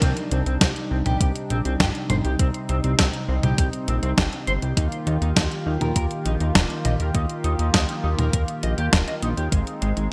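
Driving and nocturnal, this synthwave excerpt moves at 101 BPM in a straight 4/4 in C minor, cut from a longer piece and opening with a band accent at 0.0 seconds. A fat analog bass sits up front, its detuned, saturated sawtooth tone giving a thick, evolving low end with a plucky filter and fast attack. A chorused pulse-width pad holds shimmering, retro sustained chords beneath, while an electric guitar at the edge of break-up plays a dark, fingered riff coloured by analog chorus and digital delay. The clean 12-bit drum machine puts a fat, tape-toned snare up front with hi-hat and toms wrapped in gated reverb, and a thumpy, sampler-style electronic kick drops out at 9.6 seconds. The harmony moves from Cmadd9 to Ebadd9 at 4.8 seconds before landing on Ab, all set in a lush hall with bright 1980s-style digital production.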